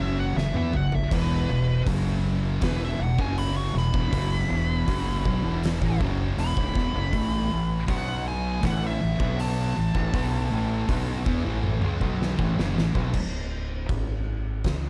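A brooding, sludgy stoner and doom metal excerpt at 80 BPM opens with a wah-and-delay fuzz lead guitar soloing over two thick fuzz guitars, a double-tracked scooped high-gain guitar grinding through F#5, E5, A5 and B5 riffs, and an up-front, overdriven fingered bass that growls beneath them. An oversized low-tuned drum kit with dark cymbals, a fat snare and punchy kick bursts in with a fill at 0.4 s in a gritty, pumping stone room. The lead falls silent at 11.6 s as the drums launch another fill, and the remaining guitars drop away at 13.1 s, leaving bass and drums to carry the final moments of this dark, close, largely dry production.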